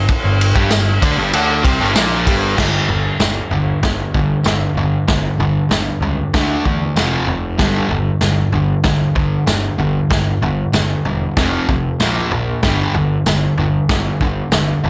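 Garage rock with a swaggering, rowdy mood and a straight four-beat drive, cut from a longer piece. A dark, double-tracked fuzz guitar sits up front playing a distorted picked riff built on G5, D5, F5 and Bb5 chords. Beneath it, a picked electric bass adds punchy, overdriven fuzz with tube saturation, heard both direct and through an amp. A vintage acoustic kit in a studio room brings a punchy kick, a medium-tuned snare, toms and dark crash and ride cymbals, mixed mid-forward with a rolled-off top. A jingly tambourine from a small room joins at 0.7 s, and after a short opening passage the music moves into its main section at 2.6 s. Light reverb and a dusky, muffled top end give the whole thing a scrappy, live-in-the-garage feel.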